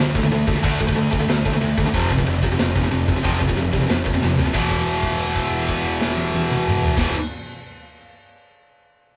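A rough rehearsal-room recording with moderate booth ambience frames this heavy, dark metal passage cut from a longer piece. A double-tracked, high-gain distorted guitar riff sits up front over a growling, overdriven picked bass, while a polished acoustic metal kit with bright china and crash cymbals, toms, a medium-tuned snare and a tight kick drives a straight 4/4 feel. A drum fill at 4.2 seconds leads into a held note from 4.5 seconds that sustains until 7.0 seconds.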